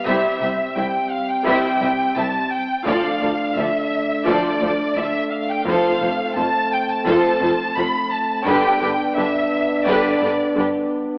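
A lush violin section carries the melody up front, its soft-attacked, vibrato-rich line sitting high and smooth-topped over a triumphant, heroic orchestral film cue at 86 BPM in F lydian. A second violin line runs beneath it with a more focused tone, while a dark, distant viola section fills in the accompaniment and a dark, roomy French horn section holds sustained chords through to 11.2 seconds. Down low, a close, rich cello section and a distant double bass section share the bass in the background, with the chords moving from C through Dm and F to G. A very quiet taiko ensemble, struck with heavy sticks, plays from 0.1 to 1.4 seconds and again from 5.7 to 7.0 seconds. The whole short fragment, cut from a longer piece, sits in a wet scoring-stage reverb and is coloured by worn, warbling cassette tape with pitch drift and an AM-radio quality.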